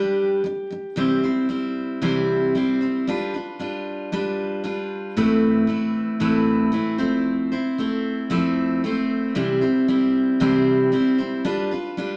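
Pop excerpt in C major at 114 BPM with a light swing, where a bright, full-bodied picked steel-string acoustic guitar plays alone and up front from 0.0 to 12.2 seconds, moving through G, C, G7, Amadd9, Fmaj7, back to C and on to G7 in an easy-going, heartfelt mood, set in a wet club reverb.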